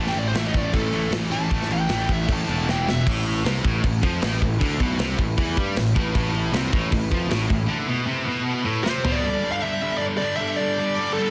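A dark, high-gain lead guitar stands out first in this aggressive, relentless heavy metal excerpt, playing a solo in A minor at 155 BPM before returning near the close at 8.8 seconds. Beneath it, a double-tracked distorted guitar and two scooped high-gain guitars grind out low riffs, one very quiet and the others sitting in the background. A growly, punchy fuzz bass sits up front alongside a tight acoustic kit with a medium-tuned snare, bright cymbals and toms, driving a straight 4/4 feel broken up by short drum fills. From 3.1 seconds, a bowed string section adds soft, floating sustained chords in the background. The mix is dense and heavily limited, with little reverb and a dry, modern edge.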